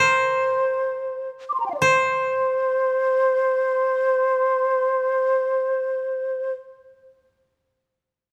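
A fingerpicked koto, bright and woody, opens this austere, calm Japanese traditional passage alongside a breathy, hollow silver concert flute whose vibrato and tongued notes sit close and up front as a second line above the koto's melody. The opening slows over its first 1.8 seconds before the music moves into a new section, with the flute falling away at 6.5 seconds and the koto at 6.6. A moderate stage reverb surrounds the pair in this excerpt from a longer piece.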